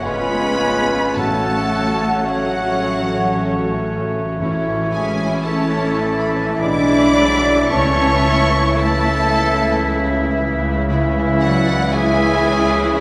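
Bathed in a wet, hall-like reverb, this tender, lyrical classical passage in 3/4 at 56 BPM moves with rubato as a lush, expressive violin section sings the melody over airy flutes, a distant oboe, a smooth clarinet and a faint second violin section, while a clear viola section and a present bassoon accompany, very quiet vintage trombones and mellow French horns sustain chords, a ringing harp plays arpeggios, dark trumpets add tight stabs, rich cellos and double basses hold the bass, and hushed, articulate timpani with hard mallets sound from 1.2 to 6.0 seconds.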